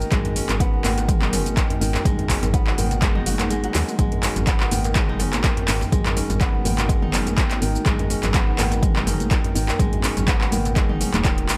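Afro house at 124 BPM in G# minor with a driving, lightly swung groove held on a G#m7 chord, built on a punchy overdriven electronic kick and an up-front deep house kit of handclaps, metallic hats, shaker and toms, with a woody, round FM bass and a crisp, ringing kora arpeggio trailed by dub echo, both pumping against the kick along with an ethereal chorused pad in the background, while distant high-tuned congas and a very quiet, cracking djembe fill out the percussion, and the kick briefly drops out from 3.5 to 4.0 seconds around a drum fill at 3.7 seconds.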